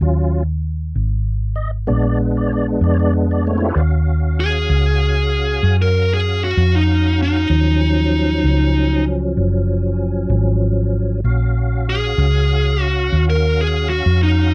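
A smoky, mournful slow blues in Eb minor at 64 BPM in 12/8, this fragment opens over Ebm7 and Bb7b9 chords with a clear tonewheel organ holding sustained chords through a slow rotary speaker and chorus vibrato, its key click audible, while a round, up-front hollow-body short-scale electric bass plays beneath and a dark, smooth overdriven picked lead guitar enters with the melody at 4.4 seconds, all captured in a dry, close 1970s-style studio sound.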